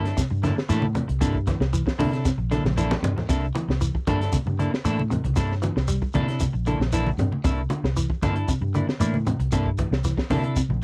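A dark, round, foam-muted electric bass stands out in this driving, joyful afrobeat excerpt at 116 BPM, grounded in C mixolydian over a C13 chord, with a crunchy, lo-fi breakbeat kit whose high-tuned snare and punchy kick sound gritty and rolled-off, adding a drum fill from 2.5 to 3.3 seconds. A clean, picked electric guitar drenched in lush chorus plays stabs, while a twangy, slightly broken-up guitar with phaser sits in the background playing arpeggios. Low-tuned, thick-skinned congas and a grainy, mellow shekere fill out the percussion in a dry, close 1970s-style studio sound.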